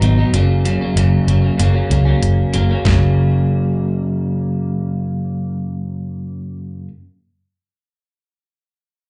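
Indie rock at 95 BPM in F# major, jangly and upbeat, heard like a live club gig through the venue's PA with a dulled top end, in a short cut from a longer piece. An up-front, compressed electric guitar at the edge of break-up picks a riff with vibrato, over a dark, round, foam-muted fingered bass that sounds punchy and amped. A detuned, overdriven 8-bit drum machine with a thumpy kick and medium-tuned snare plays hi-hat, kick and snare, with kick and snare dropping out from 2.2 to 2.8 seconds before the drums stop at 3.0 seconds, leaving guitar and bass.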